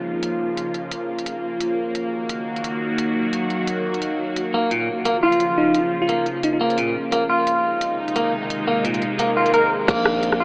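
Half-time drum and bass at 174 BPM in Bb minor, cinematic and spacious, where a tense, string-like sawtooth drone with phaser, vibrato and sidechain pumping holds sustained chords over an industrial drum kit of smooth hats and rim clicks, a twangy, clean electric guitar with tape echo brings arpeggios from 4.5 seconds, a sparkling bell-like FM electric piano adds a brief chorused melody, and an electronic swell from 9.3 seconds leads into a hard-clipped kick and a thick, saturated sub bass at 9.9 seconds, all through a gritty cassette and AM radio sound.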